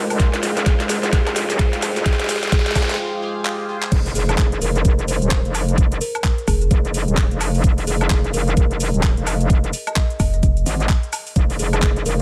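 Swung 129 BPM bass house in F minor, aggressive and gritty, opens with a build-up where a woody kalimba melody, dark warbling pad, nasal band-passed chord stabs, a breathy airy pad and a faint riser sit over an Fmadd9 chord, before a short break and an impact at 3.9 seconds launch the drop, driven by a knocking up-front kick, cracking garage snare and claps with metallic hats, shaker and woodblock, an overdriven metallic wobble bass, and heavy pulsing pluck wobble bass hits at 6.5 and 10.2 seconds, all in a dry mix cut from a longer piece.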